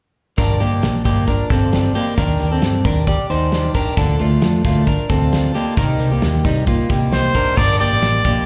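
Jangly indie pop at 133 BPM in a straight 4/4, this short excerpt cut from a longer piece carries a youthful, nostalgic mood. A shimmering, octave-doubled twelve-string acoustic guitar sits in the background with bright, boxy picked accompaniment, while a dark, slightly broken-up electric guitar plays fingered arpeggios up front; both carry a slapback echo. Underneath, a round, hollow-body short-scale electric bass gives a dark, amped low end, and a loose indie drum kit in a small room keeps time with a tight kick, medium-tuned snare, hi-hat and crash, its top rolled off. The harmony moves through Gm7, Ebmaj7, Bbmaj7/D and Cm7 before settling on Gm at 7.6 seconds. At 7.1 seconds a clear trumpet enters up front with a soft attack, light vibrato and a smooth top, singing a brief pop-style solo line with its own slapback echo. The whole thing sounds like a live gig heard through a venue's PA, touched by club reverb.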